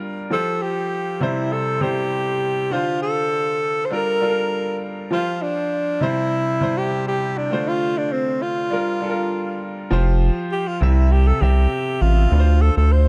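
A dark, warm mix with light small-room reverb carries this joyful, breezy afrobeats excerpt in F major at 100 BPM, where a clear baby grand piano spreads open, long-sustained chords beneath a breathy, whispered, close-miked alto saxophone melody, until a deep, round analog bass with a plucky filtered attack arrives up front at 9.9 seconds.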